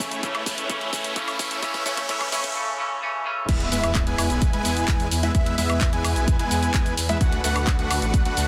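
Euphoric and uplifting, this festival progressive house excerpt at 129 BPM opens with a build-up where a bright, clean semi-hollow electric guitar picks out accompaniment through dub echo and sidechain pumping, beside a huge, thick supersaw riff, a punchy, tape-warm kick up front, a house kit of hi-hat, shaker, handclaps, woodblock and crash, a riser and impact, a drum fill and a filter sweep, while a very quiet lush pad with chorus and phaser holds chords from 0.3 seconds. The drop lands at 3.5 seconds as the guitar stops and a bold, dark unison lead enters playing echoing arpeggios, while a saturated, chorused detuned saw bass pumps beneath the chords, moving from E to D6 at 7.2 seconds. The dense, heavily limited master sits in light digital ambience.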